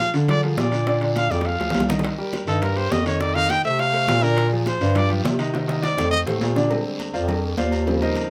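Afro-Cuban jazz in Bb major at a lively, danceable 206 BPM, this short cut opens with a clear, punchy trumpet soloing up front with light vibrato over a mellow, close-miked bass clarinet bass line, smooth vintage grand piano chords and a background bed of ringing high-tuned congas, round low-tuned bongos and cowbell, metallic band-limited timbales and agogo bells and a raspy guiro, with drum fills at 1.3 and 5.5 seconds before the trumpet drops out at 6.2 seconds and the piano takes a brief solo from 6.7 seconds, all in a light reverb.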